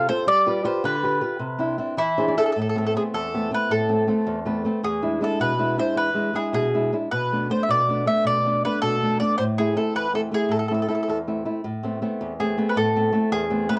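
A round, double-strung picked mandolin carries the melody of this wistful, romantic Italian folk serenade in A harmonic minor, moving in a rubato 6/8 at 106 BPM (dotted quarters) over a dark, fingerpicked nylon-string guitar that adds brief fills at 2.0 and 4.3 seconds, with both instruments up front in a lightly reverberant home cassette recording cut from a longer piece.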